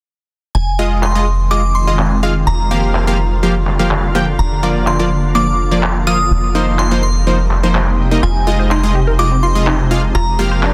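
Progressive house at 125 BPM in F dorian, dreamy and bittersweet, where a glassy FM bell melody with chorus, phaser and tape echo floats over a tight, nasal sequencer bass and punchy supersaw stabs with dub echo, joined by electronic handclaps at 1.0 seconds, a shimmering ambient pad under a filter sweep, a very quiet soft pluck sharing the bell's register, and a detuned sequenced arpeggio arriving at 8.2 seconds, all in a dense, heavily limited mix cut from a longer piece.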